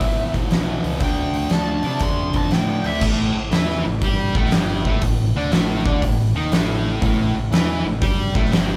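Brooding and gritty, this blues rock and southern rock power-trio excerpt swings in 4/4 as a bright, double-tracked fuzz guitar riff sits up front beside an oversized, low-tuned acoustic drum kit with a punchy kick, fat snare, dark cymbals and a saturated, pumping big-room sound, while a growling fingered bass adds overdriven bite and a smooth, shadowy lead guitar with wah carries the melody only until 3.0 s over a move from E to Dm before the trio shifts to an A5 passage, the band heard playing live together in one room with light reverb.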